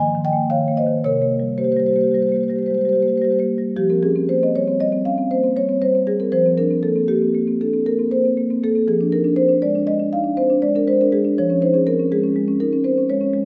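A marimba played with soft mallets carries this contemporary classical piece alone, its woody, round tone sitting up front from 0.0 to 13.4 seconds and spanning Ab2 to Ab5. The mood is hypnotic and reflective, set in F minor with a tuning of A4 = 436 Hz, moving in an asymmetric 5/4 with a rubato feel that drifts between 108 and 124 BPM. The opening section gives way to a second at 3.8 seconds, where the harmony shifts from Abadd9 and C5 through Fsus2, Gm7/F and Fm6 before settling on Dbmaj7/F. The mellow, mid-forward marimba is bathed in a wet recital hall reverb with a 1.8-second decay, and the recording, made in a church or concert hall, holds nothing above 10.7 kHz, giving a soft, rounded overall character. This short passage is cut from a longer piece.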